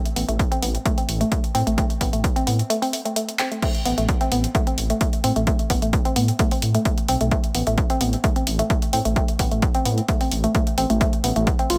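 Driving and relentless, this cut from a longer peak-time techno piece runs at 130 BPM in straight 4/4, set in A minor with a slightly sharp tuning. An analog drum machine opens with crash cymbal, handclaps and hi-hat and its own overdrive grit, soon joined by a punchy, overdriven electronic kick that sits up front. Underneath, a dark detuned saw bass rumbles and beats between A1 and A2, its saturated, sustained tone pumping through sidechain compression. The woody, wave-folded pluck riff, moving between A3 and F4, carries a filter sweep, chorus and tape echo, and its percussive, mellow attack also pumps with the sidechain. A drum fill at 3.4 seconds sets up the drop at 3.6 seconds, which carries through to the end in a dry sound with little reverb.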